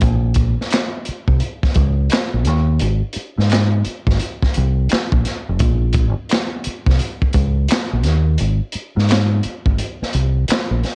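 A swung sixteenth-note groove drives this introspective, late-night neo-soul and R&B fragment, cut from a longer piece. A crunchy breakbeat kit of tight kick, medium-tuned snare, hi-hat and handclaps sits up front with a gritty, saturated cassette-tape character and a rolled-off top, while a dark, round fingered electric bass carries the low end with transformer saturation. Light reverb and a home-cassette sound frame the pair, and the kick drops out at 9.8 seconds for the final moment.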